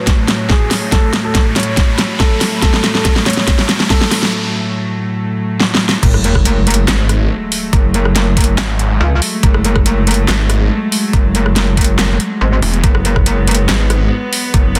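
Chaotic and aggressive, this heavy wobble dubstep passage runs at 141 BPM in a half-time 4/4 feel, centred on F# minor and cut from a longer piece. It opens with a build-up where a dark, mellow grand piano carries a short melody with dub echo and audible action noise, over clear, floating bowed strings that hold sustained chords with sidechain pumping, a very quiet breathy pad, and an electronic riser and sub drop sitting in the background. A knocking, up-front kick and a tape-warm dubstep kit with a huge snare, metallic hats, handclaps, rim clicks and crash fill the build. After a brief break, the drop lands at 6.0 seconds on an impact as the harmony moves to F#madd9 and a metallic FM wobble bass with chorus and overdrive takes over the low end. A growling, detuned sawtooth bass joins at 6.9 seconds, snarling with distortion and a moving notch, while the strings keep pumping beneath the onslaught. 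The dense, heavily limited master and light digital ambience keep the whole drop loud and in your face.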